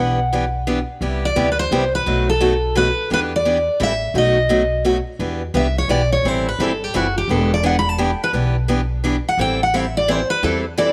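Fiery and swinging, this brief excerpt of acoustic string swing in the jazz manouche style moves at 172 BPM in 3/4 and E minor, with a swung feel and a small-room reverb. A bright, full-bodied jumbo steel-string guitar carries the melody up front, while a boxy parlour guitar with fresh strings picks through the Em7, Cmaj7, B7 and Am7 changes. Beneath them, a dark, thumpy pizzicato upright bass on gut strings holds the low end, and from 5.2 seconds the lead guitar takes a solo over the second section.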